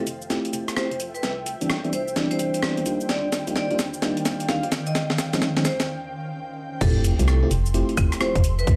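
UK garage in a two-step style, bouncy and sunny, this excerpt swings on a broken-beat groove. A gritty, compressed sampler-style kit sits up front with its high-tuned snare, hi-hat, shaker, rim clicks, claves, finger snaps and crash, while a hollow, organ-like FM bass supplies dark, decaying low notes. Glassy, bell-like FM electric piano stabs with chorus move through lush major-ninth chords under a filter sweep, and a bright vibraphone struck with hard mallets carries the melody from 0.8 seconds, its metallic ring trailing dub echo. Behind them, a cloudy, evolving granular pad and an ethereal, airy pad in the background both breathe with sidechain pumping and their own reverb. After a drum fill and a brief break, the drop lands at 6.8 seconds with a tight, layered electronic kick and a faint sub drop impact, all framed by a moderate studio room and a bed of vinyl crackle.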